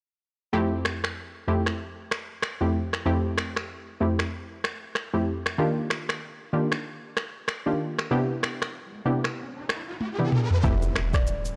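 A glassy, crystalline wavetable pluck opens this joyful, sunny afrobeats excerpt at 95 BPM, sitting up front with a chorus shimmer as it moves through Fmaj7, Ebmaj7 and Cmaj7 chords. A produced afro-pop drum kit joins almost at once with finger snaps, a deep kick, rim clicks, shaker and toms, its swung sixteenths carrying a vintage 12-bit sampler grit. An electronic riser builds from 8.9 seconds, the drums play a fill from 10.0 seconds, and an impact lands at 10.6 seconds as the harmony returns to Fmaj7. At that moment a woody, punchy log drum bass thuds in the background, and a soft, round pluck melody with chorus and tape echo adds a brief dark, gentle figure. The whole recording has a dry, gritty hardware character with cassette tape colour and light reverb, and it is cut from a longer piece.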